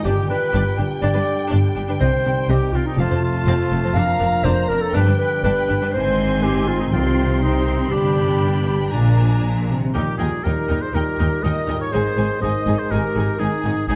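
A soaring, adventurous cinematic orchestral passage at 122 BPM in 4/4 opens with a lush, bowed violin section carrying the melody over a dark clarinet, a vibrato-tinged oboe and a softer violin line in the background, while mellow French horns and distant, very quiet bright trombones hold sustained chords, a ringing harp plays quiet arpeggios, rich violas, expressive cellos and warm double basses fill out the accompaniment and bass, a round, soft-mallet timpani stroke sounds at 6.9 s, and the harmony settles into Eb major at 10.0 s, all in a moderate concert-hall reverb.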